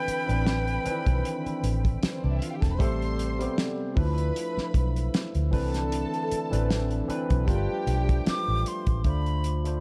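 A relaxed 77 BPM groove in 4/4 with a gentle sixteenth-note swing anchors this silky, cinematic slice of lush 1970s-style soul in D dorian, cut from a longer piece. The drum kit sits up front with a fat snare, tight kick and hi-hat, its rolled-off top and pumping room sound giving the beat a cushioned weight, while the foam-muted fingered electric bass plays low and round beside it from 0.1 seconds. A barky, lightly overdriven tine electric piano carries the accompaniment through a combo amp with analog chorus, and a percussive tonewheel organ with key click and a slow rotary speaker holds sustained chords in the background. A bowed string section, played sul tasto with vibrato and a smooth top, shapes an intimate second line until 8.6 seconds. A breathy, bright metal jazz flute with soft attack and analog delay states the melody at the opening and returns at 8.3 seconds, over changes moving from Cmaj9 through Am9, Dm69 and G7 to a closing Dm7, all set in a dark production with light studio reverb.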